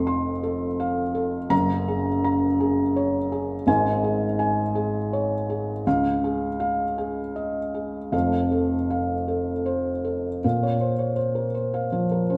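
Neoclassical minimalist piano in Bb minor, reflective and intimate, drifting in a rubato 6/8 at around 51-56 BPM. A lone felt-muted upright piano, tuned to A4 = 444 Hz, sits up front across a range from F1 to C6; its thick felt gives a dark, mellow tone with the action noise clearly audible, surrounded by a wet recital hall reverb of 1.8 seconds. This short fragment of a longer piece moves through F, Gbadd9, Absus4, Dbadd9 and back to F, then turns to a new section at 10.4 seconds on Bbmadd9.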